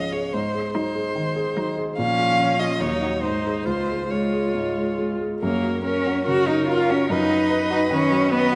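A warm violin carries the melody up front with vibrato, soft attacks and expressive portamento, while a rich cello shapes a second line with the same gliding expressiveness. A focused, smooth-topped viola and an intimate concert grand piano, whose deep bass, short sustain and audible action noise sit close to the ear, fill out the accompaniment in this quick, cheerful and graceful classical-period movement for piano quartet, played with rubato. Cut from a longer piece and bathed in a wet concert-hall reverb with softened highs, the passage moves into a new key at 5.4 s and runs to 8.6 s.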